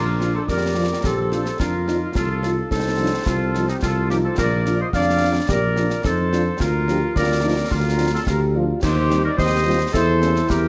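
A moderate concert-hall reverb surrounds this short cut from a spirited, proud military-style march for wind band in a straight two-beat metre. A dark, distant trumpet section carries the melody with tight, classical-style playing. A woodwind section with light vibrato and a smooth top adds a second line, as does a warm, vibrato-rich euphonium set back in the background. Up front, a mellow tuba anchors the bass, and from 0.2 seconds a very quiet French horn section with a shadowy tone fills in accompaniment, while concert snare, bass drum and clash cymbals with sombre cymbal colour sound close and dry against the roomy trumpets. The harmony moves from Bb through F7/C, Bb/D and Cm/Eb before reaching Edim7 at 9.9 seconds.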